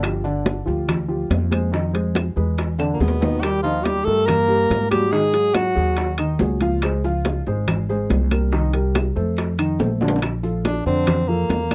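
This danceable, sunny slice of Afro-Cuban jazz opens on a dark, short-sustained upright piano comping up front over plucked, woody upright bass, with a bed of percussion that runs throughout: ringing high-tuned congas, tight vintage-sounding bongos, metal-shelled timbales, saturated claves and grainy maracas sitting back in the mix. At 2.9 seconds a breathy, whispered tenor saxophone takes the melody with scooped notes and vibrato, shadowed by a warm trombone second line, and both drop out at 6.2 seconds. Drum fills mark the turns, as the harmony moves from Fm7 and E7 through Eb, Dbmaj7 and Cm7 to F7 before settling on Bbmaj9. The saxophone returns for a brief, intimate solo at 10.7 seconds. The sound is that of a dry, close 1970s-style studio with light reverb, and the music is cut from a longer piece.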